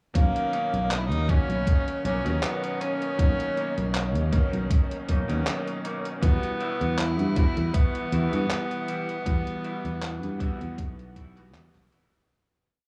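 This vaporwave piece has a dreamy, faded mood, built on a slow swung groove that moves from Bmaj9 to Emadd9 at 6.2 seconds before fading out from 8.3 seconds. A bright tenor saxophone carries the melody in a pop style, using motif-based call phrases set in tape echo. A clear electric grand piano holds rootless chords with syncopated pushes, its long sustain coloured by lush chorus, 12-bit sampler grit and analog delay. Behind it, a silky string machine pad swells in slowly with ensemble chorus. Up front, a fingered electric bass plays a growly, punchy syncopated riff beside a thumpy electronic kick, while a detuned 8-bit drum machine supplies closed hi-hat and handclaps in a slowed pop beat, both drum parts treated with studio reverb. A twangy clean electric guitar picks off-beat, close-voiced chords in the background through chorus and delay, and the mix has an echo-heavy cassette character with small-room ambience.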